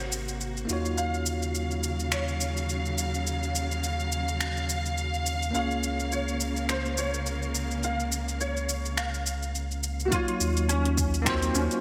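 Wistful and warm, this sunset chillout excerpt moves at 105 BPM in 4/4 with a swung sixteenth feel in Eb dorian, drifting through Ab9, Ebm9 and Db6 chords. A concert grand piano with short sustain carries the melody through ensemble chorus and digital delay, over a bell-like tine electric piano, lush bowed strings with vibrato, a round sine sub bass up front, and a deep house kit of finger snaps, metallic hi-hat and shaker. At 10.1 s the strings drop out and a layered electronic kick enters, all set in a moderate, lush hall reverb with a bright 1980s-style digital sheen.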